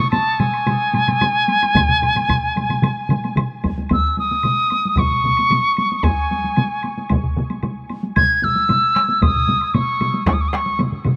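Bathed in a vast ambient reverb over a faint mains hum, this driving, powerful Japanese traditional taiko excerpt gathers pace as a pure, mellow piccolo with vibrato and tongued, expressive phrasing and softened highs sings the melody up front, while two taiko parts struck with hard and heavy sticks in a small room start at 0.1 seconds alongside a woody woodblock tucked in the background, and two more join at 1.8 seconds, one close and dry, the other compressed and saturated.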